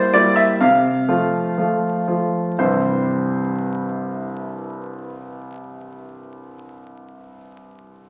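This classical-period piano sonatina, cut from a longer piece, has a playful, cheerful character in a straight four-beat metre. A clear concert grand piano plays solo, spanning from deep bass notes up into the upper middle of the keyboard, and it sounds open and up front. The opening passage slows down over its first 2.6 seconds, moving from a dominant-seventh colour through a chord over a C bass before settling onto the home chord as a new section begins at 2.6 seconds. A wet recital-hall reverb surrounds the playing, and the sound carries the crackle of a very old 78 rpm record, giving it a dusty, antique patina. The piano continues alone until the fragment ends at 8.1 seconds.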